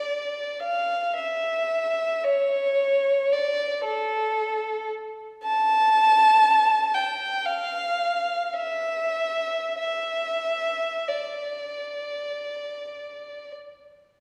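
In free, unmetered time, this yearning, mournful classical passage, cut from a longer piece, features a single unaccompanied violin playing from 0.0 to 13.5 seconds, its warm, bowed tone smooth and even with vibrato and a silky upper register, sitting up front within the lush reverb of a scoring stage heard from further back in the room.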